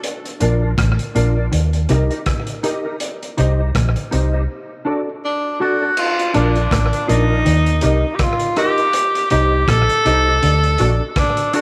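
Roots reggae at 81 BPM in Bb major, laid-back and swung, with a gritty, saturated breakbeat kit using slapback echo, a round, foam-muted bass up front, two clean, fingered electric guitars (one chorused with tape echo on accompaniment, one very quiet on a low riff), a reedy electric piano with fast tremolo playing stabs in the background, and a tenor saxophone with light vibrato and tape echo entering at 5.2 s with the melody, all in a moderate plate reverb over a Bb–Eb–Cm–D progression.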